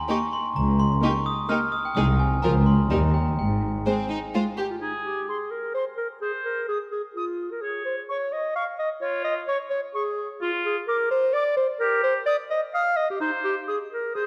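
A bell-like, ringing glockenspiel struck with hard plastic mallets carries the melody up front in this playful, mischievous film cue in 3/4, joined by intense violin sections with vibrato on the tune and a second line, lush viola accompaniment, and smooth cello and double bass underneath. At 4.7 seconds the strings give way to an up-front clarinet and a soft-attacked oboe in classical style, with a distant, airy flute arriving at 5.3 seconds. A moderate scoring-stage reverb lends the quirky, whimsical cue its sense of space before it breaks off at 14.3 seconds, cut from a longer piece.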